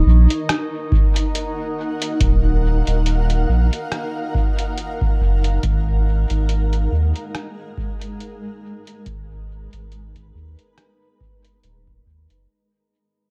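Swung sixteenths in 4/4 drive this hazy, deep ambient dub fragment: a muffled, pitched-down sampler kit of compressed hi-hat and rim click arrives at 0.3 s, soaked in dub echo and studio reverb, and an analog electronic kick, re-recorded in a large room, joins at 0.9 s. Underneath, a round sine sub bass sits up front, while a bright granular pad of detuned sine and sawtooth voices in unison blurs slowly through its own reverb, shifting from Ebmadd9 to Abm9 at 5.6 s. The echo-heavy mix fades out across its full 12.5 seconds.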